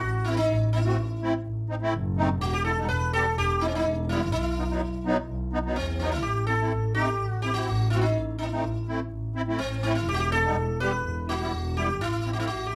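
A straight 4/4 pulse at 125 BPM carries this festive, bittersweet klezmer excerpt in A dorian sharp4, where a buzzing sitar with shimmering sympathetic strings takes the melody, a reedy musette accordion in wet tuning joins on accompaniment from 0.3 seconds, and a dark bowed double bass sings with vibrato and portamento beneath, all up front in light reverb as the chords move from Am through Em and B and back to Am.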